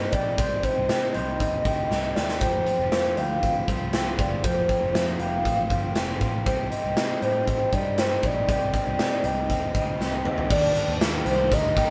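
A hollow, woody clarinet-like synth lead with chorus and vibrato carries the melody from the start of this bright, youthful jangly indie pop piece at 118 BPM in F mixolydian, over a twangy, compressed clean electric guitar playing arpeggios, a raw overdriven garage guitar in the background and a dark, round, foam-muted picked bass. A big, up-front acoustic rock kit with a punchy kick and bright cymbals comes in at 0.1 seconds and plays fills before the chords move to Ebmaj7 at 10.5 seconds. There, a lush, distant violin section with tape echo adds a second line, joined by a very quiet, jingly tambourine, all in a moderate live-room ambience.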